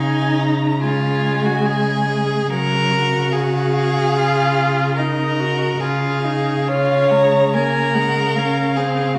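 Bathed in a reverberant recital-hall glow, this tender slow romantic movement for string quartet in Db major drifts at a rubato 72 BPM, with a distant, expressive first violin singing the high melody over an up-front second violin's soft-attacked line, a rich cello sustaining a low Db bass with vibrato and portamento, and a focused, smooth-topped viola joining the accompaniment at 0.8 seconds.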